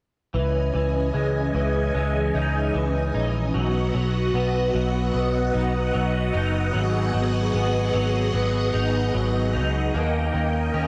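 A dry, gritty sound with transformer saturation and little reverb gives this short dream pop excerpt a close, hardware-colored feel, even as its mood drifts toward the ethereal and haunting. A phased string machine holds sustained chords with a soft attack, its bright sawtooth tone swirling and evolving through ensemble chorus and phaser. An electric guitar at the edge of break-up plays picked arpeggios in a twangy, slightly broken-up voice, colored by ensemble chorus and analog delay. Underneath, a vintage foam-muted picked electric bass sits up front with a dark, round, punchy tone. All three parts play together from 0.3 to 10.9 seconds over a straight 4/4 feel, moving through C#madd9, B, G#m7 and D#7 as the fragment cuts off mid-piece.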